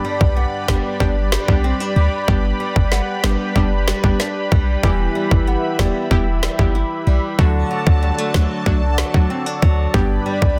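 Entering together at 0.2 seconds, up-front electronic drums with a tight kick and woody snare, re-recorded in a small room, and a deep, boomy, sine-toned 808-style bass drive this sunny, bouncy dancehall clip at 94 BPM in G major, while a fingerpicked flamenco guitar with audible finger squeak plays arpeggios, punchy detuned sawtooth brass stabs pump with chorus, and a lush, airy unison pad with chorus and phaser sustains bright chords over a G, Em, D progression, with a break running to 4.8 seconds in a dense, heavily limited, dry mix.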